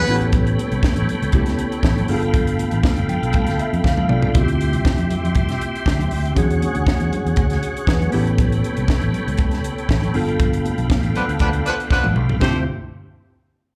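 Glamorous and driving, this live disco cut heard through a club's PA and reverb sets a worn, slightly out-of-tune tine electric piano with slapback echo and its own fills against a full, lightly overdriven tonewheel organ with key click and a slow rotary speaker, while a round, punchy fingered bass and a dry, up-front funk kit with a high-tuned snare drive the groove, faint bright congas sit far back, and a clear, up-front horn section stabs at the start and returns at 11.2 s for a band accent.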